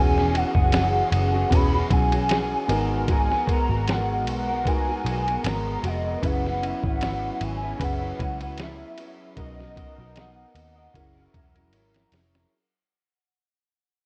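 A warbling, wave-folded synth lead carries the melody over a dark, woody upright piano, a slightly broken-up electric guitar with chorus and vibrato, a smooth analog pad and a round, foam-muted electric bass, with a compressed, pitched-down sampler-style drum kit joining at 0.2 seconds. This dreamy, sunny excerpt of indie bedroom pop at 76 BPM in 4/4 has a gentle 16th-note swing and moves through E69, G#m9, F#7sus4, Bmaj7 and F#7. The cassette-tape texture gives it a homemade, nostalgic haze: the piano sounds worn and slightly detuned with audible action noise, the lead drifts through tape echo, and the whole passage fades out from 1.2 seconds to the end, with a drum fill arriving at 11.7 seconds.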